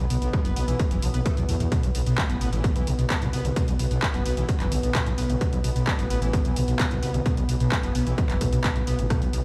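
An overdriven electronic kick drum sits heavy and up front in this dark, driving peak-time techno cut at 130 BPM, pumping a growling FM bass, a squelchy, resonant acid riff drenched in distortion, chorus and tape echo, and an evolving sawtooth drone on a B5 chord, while overdriven handclaps, hi-hat and rim click fill out a dry mix that still carries the stone-room boom of a big sound system in a bare space.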